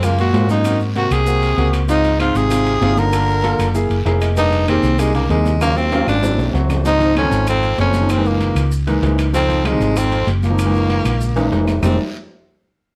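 Afro-Cuban jazz with a sultry, fiery mood, this straight-feel passage in 4/4 is cut from a longer piece and moves through rich seventh, ninth and thirteenth chords. A growling tenor saxophone carries the melody up front, its tone edgy, raspy and gritty with vibrato and a soft attack. Beneath it, a mellow baritone saxophone sits in the background with a second line, using subtone, light vibrato and scooped notes. A warm concert grand piano supplies intimate, natural accompaniment with deep bass and audible action noise, and adds a brief fill at 3.9 seconds. A hollow-body, short-scale fingered electric bass sounds dark, round and punchy up front through an amp. Ringing high-tuned congas played with soft hands, distant metal-shell timbales, woody claves, a raspy guiro and grainy maracas fill out the percussion in moderate studio reverb, with a drum fill arriving at 5.6 seconds.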